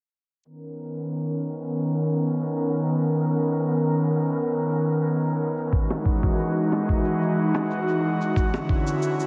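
A dreamy, reverb-soaked mix with a low-pass filter and a huge ambient tail gives this short sunset chillout excerpt a hazy, sunlit glow. At 91 BPM in B major with a gentle 16th-note swing, the mood is relaxed and sunny, built on an up-front, breathy pad that blends triangle, detuned sawtooth and a noise layer with slow attacks, long releases and chorus. The pad holds sustained chords moving from Bmaj9 to Emaj9 and then Dmaj9, while a filter sweep runs across the whole passage. A tape-tinged electronic shaker sits in the background from the start. At 5.7 s a gritty, thumpy, compressed kick arrives up front, and tight, high-tuned bongos played with soft hands join very quietly at 5.9 s, before the sound ends at 9.3 s.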